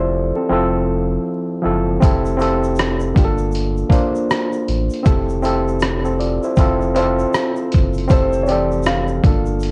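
A gritty, compressed sampler-style drum kit sits up front in this nostalgic, dreamy lo-fi hip hop excerpt, arriving at 2.0 seconds with a thumpy kick, hi-hat and rim click that sound re-recorded in a large room, all on a swung 4/4 groove. Beneath it from the start, an overdriven reed electric piano carries the accompaniment with a barky, reedy bite through a combo amp, its tone rounded by cassette tape and a low-pass filter as it moves between Fmaj9, Fmaj7 and Gm9 chords. A deep, full sub bass with an octave holds the low end with sustained sine and triangle tones. A soft, felt-muted upright piano plays the melody in the background, heard briefly at the opening and returning at 7.0 seconds with a mellow, intimate touch. A grainy, bright egg shaker enters with the drums, distant and faint in a large room. Light reverb, worn and warbling old tape, warbly pitch drift, vinyl crackle and a dulled top end give the whole recording a dusty, faded character.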